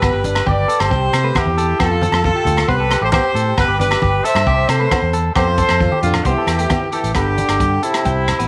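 Highlife guitar band music, danceable and carefree, cut from a longer piece, in which a tight, up-front horn section carries the melody over a round fingered electric bass, a gritty, saturated breakbeat drum kit with a tight kick and rolled-off top, ringing agogo bells, low-tuned congas in the background, a dark picked electric guitar through a small old amp, and a slightly broken-up, compressed fingered guitar playing arpeggios through spring reverb and slapback echo, while a raspy, growling trombone with light vibrato enters at 6.0 seconds as a second line, during a drum fill that begins at 5.9 seconds.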